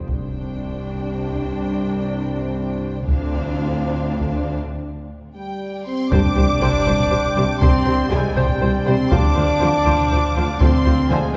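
This epic orchestral film score moves at 80 BPM in a broad 6/8, epic and dramatic in mood, and is cut from a longer piece. Lush bowed strings carry it: a studio violin section sings the melody high with vibrato and portamento, a symphonic violin section adds a smooth, even second line, and a dark, expressive viola section fills the middle. Clear French horns and bright, very quiet trombones hold sustained chords, while cellos set in the background and woody double basses anchor the bass beneath the harmony moving between Csus2 and Dm7. A taiko ensemble struck with heavy sticks pounds from the background, and huge, dark impacts and sub drops, kept very quiet, mark the opening and the second half. After a break with a drum fill and a reverse cymbal, a tight woodwind section joins at 6.1 s with warm sustained chords. The whole orchestra sits further back in a wet concert hall with a long, spacious tail.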